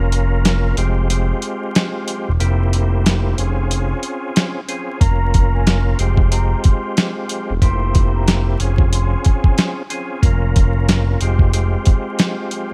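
A swung 4/4 boom-bap groove from a gritty, thumpy sampler-style drum kit drives this dark, dusty hip-hop excerpt, with a smooth gliding synth bass sitting up front beneath a thick, overdriven tonewheel organ through a stopped rotary speaker and cassette tape, while a veiled, breathy bucket-muted trumpet whispers a jazz-style solo in the background from 5.0 to 9.7 seconds amid vinyl crackle.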